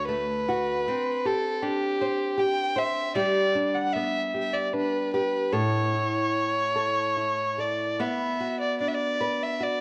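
A worn, warbling cassette sound colours this short cut from a longer Celtic slow air, with warbly pitch drift and a moderate recital-hall reverb around the players. The mood is wistful and nostalgic, moving in 3/4 at roughly 71-80 BPM with a loose, rubato feel and tuning set at A4 = 438 Hz. A single bowed fiddle carries the melody up front, its tone rich, focused and slightly boxy with light vibrato. Beneath it, a small, bright nylon-string guitar is fingerpicked as accompaniment, also close in the mix. The harmony moves from D through Csus2 and G to A, settling on Bm near 8.0 seconds before the cut ends at 9.8 seconds.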